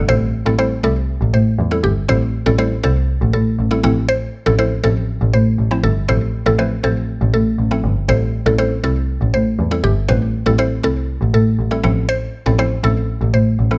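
A straight 4/4 pulse at 120 BPM drives this energetic dance-pop excerpt in A minor, tuned to A4 = 441 Hz and cycling between Am7 and Fmaj7. A muted double bass, bowed by one player with light vibrato, sits close and up front with a dark, veiled tone. Above it, a woody, round, mellow synth pluck plays the accompaniment through chorus and phaser, while a second mallet-like pluck carries the melody from 0.1 s with a percussive, short-decay FM tone, a noise layer, chorus and tape echo, all in a dry room with little reverb.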